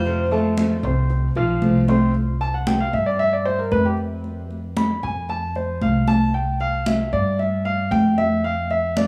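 This danceable Cuban son and guajira fragment opens with a metallic, double-strung tres melody set back in the mix, fingerpicked archtop guitar with fresh strings and audible finger squeak, grand piano arpeggios, a woody, growly pizzicato upright bass up front, and bright, high-tuned congas struck with hard hands in a distant, large room. After the tres falls silent at 1.6 seconds and the guitar at 2.1 seconds, the intimate, natural-sounding grand piano, its action noise audible, takes a solo over bass and congas until 9.1 seconds. Light studio reverb frames the warm mood.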